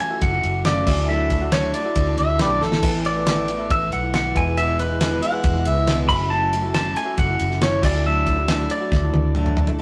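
Nostalgic and jangly, this short excerpt of folk rock and heartland rock moves at 138 BPM in a straight 4/4. A twangy pedal steel guitar carries the melody up front with volume swells and slide, over a bright, boxy parlour acoustic guitar, a dry, damped 70s drum kit with a fat snare and tight kick, a round, foam-muted electric bass, and a reedy electric piano with fast tremolo sitting in the background. A gritty, overdriven harmonica takes a solo from 2.2 to 6.0 seconds with scooped notes and tongue slaps, and a drum fill closes things out from 8.9 seconds in a rough rehearsal-room sound.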